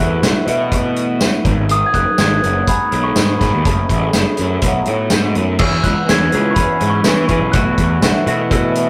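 Wistful yet carefree, this indie rock excerpt in E major moves at 123 BPM in a straight 4/4. A mellow, bell-like glockenspiel played with rubber mallets carries the melody over a slightly broken-up, lo-fi riff from an electric guitar through a small old amp with phaser, a growly fuzz picked electric bass up front, and a loose indie drum kit with punchy kick, crash, hi-hat, snare and tambourine that enters at 0.2 s. A twangy twelve-string electric guitar joins in the background at 5.6 s, all within a rough rehearsal-room sound with tube saturation and moderate booth ambience over chords that shift from B7sus4 through G#m7 and F#madd9 to an E6.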